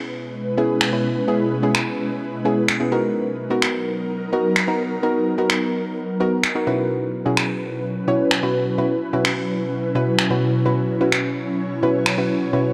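A light, reverberant digital ambience frames this carefree, euphoric dance-pop excerpt in B major at 128 BPM, with a soft, round pluck carrying the accompaniment and an ethereal, airy pad holding sustained chords from 0.1 seconds, its slow attack and long release wrapped in ensemble chorus. Electronic finger snaps enter at 0.8 seconds, layered and up front with a small-room character, while the pluck's fast, decaying notes and darker filter sweep sit beside the mellow, detuned pad. The harmony moves from C#m7/B to Bmaj7 and then to F#7sus4/B at 6.7 seconds.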